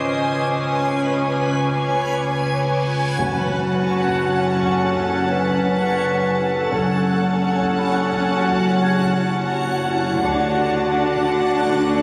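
Heard through a phone in a reverberant, compressed room, this tense, ominous suspense-score cue in 5/4 sets dark, close violin and viola sections and a distant, mellow clarinet over warm cello and double bass sections, a reversed, detuned swelling pad, an eerie metallic drone with chorus and a very quiet, bell-like celesta, while a rich high violin texture ends by 2.8 s, a huge reverse cymbal enters at 2.5 s, and at 3.2 s a dark impact, a floating, sul tasto chamber violin melody, a background taiko ensemble on hard sticks and round, soft-mallet timpani arrive together.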